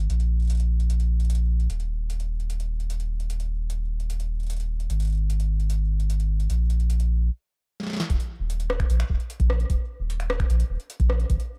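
Eerie and intricate, this dry IDM fragment at 150 BPM in straight 4/4, tuned to A4 = 435 Hz, is cut from a longer piece and rests on a round, sustained sine sub bass sitting up front between Eb1 and Bb1. A booming analog drum machine with overdrive scatters finger snaps, metallic hi-hats, rim clicks and a crisp snare shaped by a filter sweep, leading into a brief stop from 7.3 s and a drum fill at 7.8 s. At 8.1 s a deep, overdriven electronic kick joins for the closing section, both drum parts carrying the boxy character of a small room.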